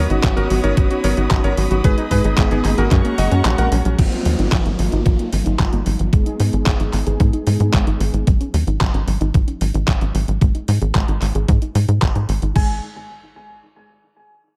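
A tight, punchy sequencer bass with a nasal, saturated sawtooth edge drives this nostalgic, bittersweet italo disco cut in G# dorian at 112 BPM, underpinned by a detuned, overdriven 8-bit drum machine with a thumpy kick, handclaps, hi-hat and crash, while the kick drops out from 3.4 to 4.0 seconds. A bright, clangy electric grand piano carries the tape-echoed melody over lush bowed strings in the opening seconds, as a soft, round pluck arpeggiates in the background and mellow, detuned synth brass stabs with chorus and vibrato until 8.2 seconds. A background downlifter passes through the middle as the chords move from Badd9/G# through D#madd9/G# and G#m to G#7sus4, all soaked in a dreamy plate reverb.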